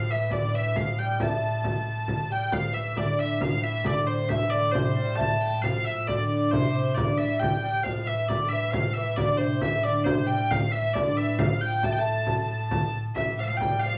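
A small room's wet ambience surrounds a band playing live in this driving, ancient-sounding medieval dance in 3/4 at 135 BPM in A minor, cut from a longer piece. Up front, an earthy, airy-bowed hurdy-gurdy carries the melody over a delicate fingerpicked lute with double nylon strings and a biting, reedy viola da gamba drone on A2, while a deep frame drum played with soft hands provides the percussion. At 2.3 s an intense fiddle with light vibrato joins as a second line in the background.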